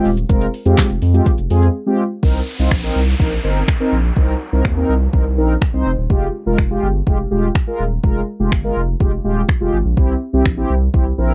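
A mellow synth brass opens this confident, energetic dance-pop excerpt, its round, brassy sawtooth chords sustained with chorus and a filter sweep, pumping against a thick, saturated sub bass and an up-front deep house kit of deep kick, fat snare, metallic hats, handclaps, finger snaps and shaker. After a brief break, the harmony moves from Fmadd9 to Cm7 at 2.2 seconds as an electronic downlifter passes through until 6.1 seconds. The dry, close sound has a 1970s studio feel with a tape-tinged kit.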